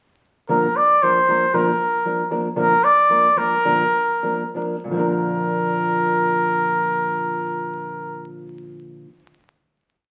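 In a straight 2/4 at 89-116 BPM that slows from 2.6 to 4.9 seconds into a closing chord, this brief, proud and festive mariachi piece in Bb major sets a warm, soft-attacked classical trumpet up front, carrying a motif-based melody in period phrases over a dark, full-bodied nylon-string guitar that thumb-plucks and chop-strums open chord shapes, the pair heard through a club reverb and the crackle of a very old 78 rpm record.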